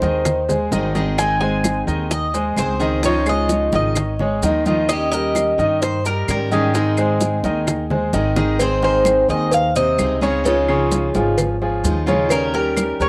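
Sunny and danceable, this short cut from a longer Cuban son and guajira piece moves in a straight four-beat groove. A bright, metallic Cuban tres carries the melody on picked double strings, some of them octave-doubled, with a touch of tape echo, while a full-bodied dreadnought steel-string guitar plays picked accompaniment and a clear, boxy grand piano sits up front with short-sustained arpeggios. Underneath, a dark, thumpy upright bass with gut strings plays pizzicato. In the background, compressed, saturated congas with a thin, damped skin and round, low-tuned bongos with cowbell are struck with hard hands, joined by grainy, mellow maracas close at hand and woody claves entering at 0.3 seconds. The harmony cycles through Ab, Dbadd9 and Eb7, and a drum fill at 8.1 seconds leads into a second section at 8.6 seconds. The tres, guitar and piano carry a cassette-tape character, all within the moderate booth ambience of a home recording.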